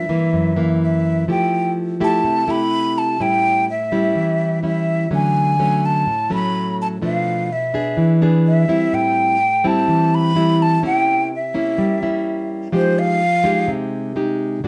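Melancholic and intimate, this bossa nova fragment in a straight 4/4 pairs a breathy, hollow jazz flute, played with vibrato and a soft attack, with a fingerpicked nylon-string guitar whose fresh strings give a classical, acoustic glow, both sitting up front. The harmony drifts through rich chords such as Fmaj9, Bm7b5 and C7b9, and at 12.7 seconds the flute takes a brief solo over an Fm9, stopping at 13.7 seconds while the guitar carries on to 14.7 seconds. The players perform live together in one room, wrapped in a wet studio reverb.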